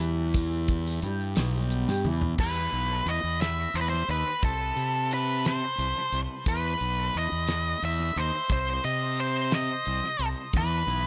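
An echo-heavy, small-room sound frames this trippy, dark psychedelic rock excerpt at 59 BPM in 6/8, where a mellow, phased and double-tracked clean guitar riff opens over round, overdriven fuzz bass, a damped 70s kit with a fat snare and dark cymbals, and a background tambourine, until a drum fill at 2.0 seconds hands off to an up-front octave-fuzz lead guitar melody from 2.4 seconds over chords moving from E5 through Am/C and Cm, with the riff guitar returning at 10.5 seconds.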